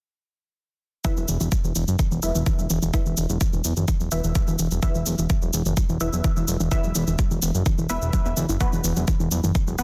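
This melodic techno excerpt opens at 1.0 s with a soft, round pluck spinning arpeggios over a punchy electronic kick, a shaker and a muted dub chord stab, all at a straight 127 BPM in 4/4 and centered on an Esus2 chord. A fat analog bass joins at 1.2 s, its thick, detuned sawtooth tone driven through tube saturation and sitting up front with the kick. The pluck blends triangle, sine and sawtooth layers with a noise layer and a moving notch, and it has a gentle, dark character shaped by chorus, delay and sidechain pumping, while a filter sweep runs across it through the whole passage. Lower in the mix, the deep, evolving chord stab carries a sub octave and passes through phaser, analog chorus, delay and sidechain pumping for a mellow, breathing pulse. The kick and shaker have a tape-warm, layered sound re-recorded in a large room, and light reverb and a dense, heavily limited modern master give this hypnotic, driving groove its weight.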